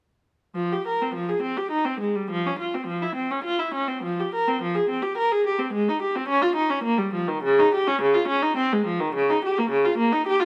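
This is a classical, baroque-style suite movement for unaccompanied viola in F minor, taken from a longer piece and set in 3/4 at about 105 BPM. The mood is introspective and flowing, with uneven beats and a rubato feel that lets the phrases breathe freely. A single bowed viola plays alone from 0.6 seconds to 10.4 seconds, ranging from Db3 up to Bb4. Its period-style gut-string tone is reedy, with a smooth top, and it sits up front in the sound. The instrument rings in a stone room whose reverb, 1.3 seconds long, lends the solo line a sense of space.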